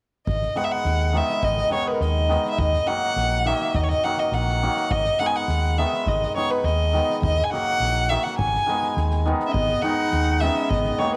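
A rich, vibrato-laden violin opens this short excerpt of Balkan wedding-band folk, carrying a smooth, even melody up front at a brisk 103 BPM in 2/4, with a restless, virtuosic mood in G# minor. Beneath it, a dark, round fingered electric bass with transformer saturation anchors the low end, while a soft-mallet drum kit sits in the background with a boomy kick and fat snare in a big-room sound. From 0.6 seconds a hammered dulcimer adds shimmering, ringing accompaniment close to the front. The harmony moves between G#m and D#m, and at 9.5 seconds a vintage-toned clarinet in classical style joins with a second line beneath the violin. Light studio reverb gives the ensemble a gentle sense of space.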